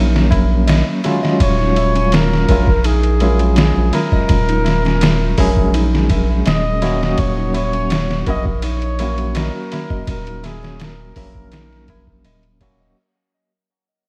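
Vinyl crackle and light studio ambience frame this brooding, hypnotic trip hop excerpt at 83 BPM, where a gritty, pitched-down sampler-style drum kit with a thumpy kick sits up front beside a deep, round analog bass. An overdriven tine electric piano with fast tremolo and tape echo carries the Ebm11 harmony, which moves to Gb/Eb at 7.2 seconds, while a fingerpicked nylon-string guitar arpeggiates in the background and a high-tuned, ringing tabla adds dry accents. From 1.4 seconds a veiled, close-miked trumpet with a bucket mute and light vibrato plays a jazz-style solo melody, and the whole piece fades out from 5.3 seconds.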